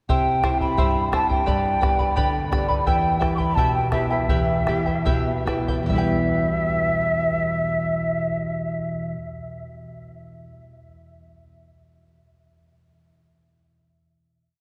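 Earthy and melancholic, this short Andean folk piece in a straight two-beat metre unfolds in a resonant church or concert hall with a long, cathedral-like reverb. An airy, end-blown cane quena carries the melody in tongued, motif-based phrases with vibrato and an expressive, distant tone. Beneath it, a shimmering charango with double strings mixes fingerpicking and rhythmic strumming in open chord shapes, while a classical nylon-string guitar sits up front with fingerpicked bass notes and an oompah chord figure. A round, close and dry bombo repeats a steady pattern through a simple C, G and E minor progression. The tempo slows from 2.9 seconds, the ensemble settles onto a final chord at 5.9 seconds, and the bombo drops out at 6.3 seconds as the strings and quena ring into the hall.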